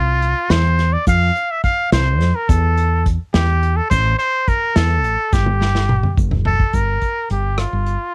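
A driving, uneven 5/8 pulse at 212 BPM in eighths, with a straight feel, carries this brooding progressive band piece in G dorian, cut from a longer work and captured dry on a home cassette. Up front, a nasal trumpet with a straight mute and vibrato plays a jazz-style solo melody over a woody fretless electric bass with a hollow-body tone. An acoustic kit played with bundle sticks, featuring a punchy kick, snare, rim clicks, hi-hat and toms, plays a fill from 5.3 s, while a grainy tube shaker enters in the background at 1.1 s and the harmony moves from Fmaj7 to A5 before arriving on Gm at 6.7 s.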